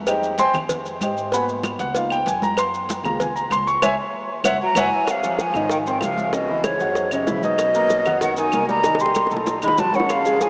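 A brisk, straight 4/4 pulse at 192 BPM drives this sunny, sophisticated Afro-Cuban jazz excerpt, cut from a longer piece. Woody claves, ringing high-tuned congas played with soft hands, tight cowbell and bongos, and grainy maracas keep the groove, while a dark, growly pizzicato upright bass with steel strings anchors the low end. A warm grand piano sits up front and takes a solo through the opening over the bass and percussion, with a drum fill and band accent arriving at 3.8 seconds. At 4.6 seconds a breathy, hollow silver concert flute takes the melody, close-miked with vibrato and tongued notes, joined by a distant, roomy tenor saxophone playing a soft-attacked second line in jazz style. The harmony moves through rich colours such as Fm9, Db13 and Bmaj7. The whole recording floats in a vast, echoing space with a huge ambient reverb, yet comes across with a small-speaker sound.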